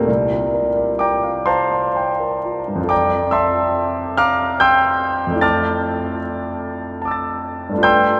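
Impressionist solo piano in F major, serene and luminous, drifts in rubato 6/8 at roughly 41-52 BPM, its clear, polished concert grand sitting intimate and up front with deep bass, long sustain and audible action noise, bathed in a 5.0-second cathedral reverb as it moves from C9sus4 to Fmaj7 at 2.9 seconds and on to Dmadd9/F at 5.4 seconds in this brief fragment of a longer piece.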